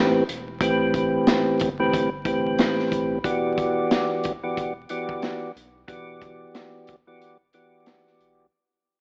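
Vinyl crackle and an AM-radio tone, wrapped in a moderate echo-chamber reverb, frame this gritty, reflective boom-bap hip-hop excerpt: a mellow, round tonewheel organ with third-harmonic percussion and a slow rotary speaker sits up front over Am9 moving to Em7, a crunchy, saturated breakbeat kit with a high-tuned snare and tight kick sounds dark and close, and a deep, thick sub bass stays in the background, all of it fading out through to a break at 7.2 seconds.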